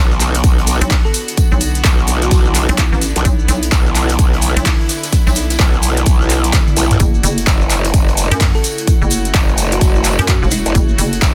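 A small-room sound carries this gritty, bouncy bass house excerpt at 128 BPM with a swung sixteenth feel, where an overdriven, punchy electronic kick and a growling, wobbling growl bass with chorus sit up front beside a hollow, knocking FM bass with tube saturation and sidechain pumping, while a big-room dance drum kit adds metallic hats, handclaps and toms, a very quiet street-band drum kit adds snare and tambourine, grainy maracas shake in the background, a clear bowed string section holds sustained chords over Bm moving to F#m at 7.0 seconds as a cloudy granular pad adds a sustained, evolving texture, and a round, tine-like thumb-piano-like synth pluck with dub echo surfaces at 1.0 and 8.5 seconds.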